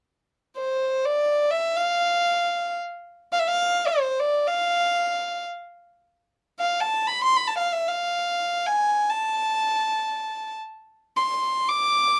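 A single bowed violin enters at 0.6 seconds and carries a melancholic Arabic melody in free, unmeasured time, sitting in a high register between C5 and D6. Played sul tasto by one player with a soft attack, its tone is warm and pure, with a smooth top that lets the line float. The violin is placed up front in a moderate studio ambience, with a short, gentle room decay around it. The mood is hypnotic and the line continues until 12.2 seconds, where this fragment of a longer piece is cut off. The instrument is tuned slightly high, to A4 = 441 Hz.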